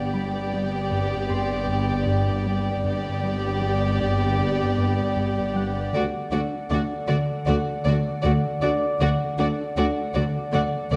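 A rubbery, hollow square-wave bass riff with a moving notch filter stands out in this eerie, uneasy cinematic suspense cue at 78 BPM, where intimate sul tasto violins carry the melody and a second line over background violas, a dark cello section and double basses, while a glassy, ethereal glass harmonica sustains beating chords and a ringing concert harp adds fingerpicked texture, set in a wet concert hall reverb as the harmony shifts from G to D at 5.9 seconds.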